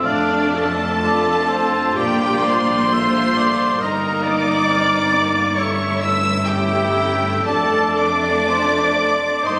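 A yearning, melancholic classical passage in D minor, cut from a longer piece, opens with an up-front chamber violin section singing the vibrato-rich melody over a focused second violin line and a mellow cor anglais, with a vintage-toned clarinet joining at 0.1 s as another second line, while distant violas accompany, a tight French horn section holds sustained chords in the background and smooth cellos with double basses carry the bass, all at a slow, rubato 55-69 BPM in a reverberant recital hall captured on a phone.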